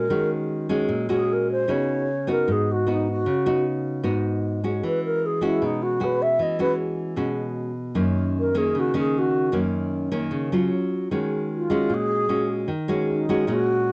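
Melancholic and intimate, this brief fragment of a longer bossa nova at 153 BPM in Eb phrygian sets an airy, unsteady wooden-headed alto flute, tongued and shaded with vibrato, in front for the melody over a fingerpicked classical nylon-string guitar moving from Ebm7 through Db9sus4, E69 and Gb6 to Ebm11, both parts playing the whole 13.9 seconds in a dry, close 1970s-style studio sound.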